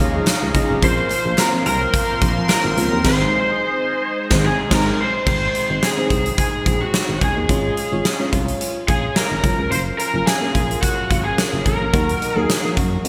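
Romantic and glossy, this cut from a longer 1980s-style pop piece moves at 108 BPM with a light 16th-note swing in Ab mixolydian, as an up-front overdriven lead guitar with a lo-fi edge sings the melody over a dreamy, chorused FM electric piano, a round, punchy FM bass and a huge arena drum kit with a fat snare and gated reverb. Behind them, a direct-recorded clean guitar plays a riff bathed in lush chorus and shimmer reverb, while a very quiet raw garage guitar, dark, mellow synth brass stabs and a bright, resonant pad with a slow attack and a filter swell fill out the opening until about 5 seconds, with barely audible distant handclaps early on and a band accent from 3.0 to 5.3 seconds. The bright digital production sits in a wet hall reverb, with chords drifting from Dbadd9 and Bbsus2 through Gbmaj7 to Ebm.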